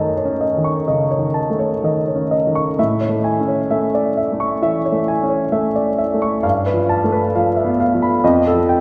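A concert grand piano opens this hazy, wistful fragment of impressionist classical music, heard alone from 0.0 to 8.8 s. The tempo is slow, around 61-68 BPM in 4/4, and the rubato gives it a loose, drifting feel. The piano sits up front with an intimate, natural tone, deep bass reaching down to F2, and audible action noise from the instrument. Its harmony moves from F#m6 to Amaj7, then shifts to G9 at 6.4 s and F9 near the close, with the upper notes reaching C#6. A cathedral reverb with a long six-second tail surrounds the playing, placing it in a church or concert hall, and the piano is tuned to A4 = 439 Hz.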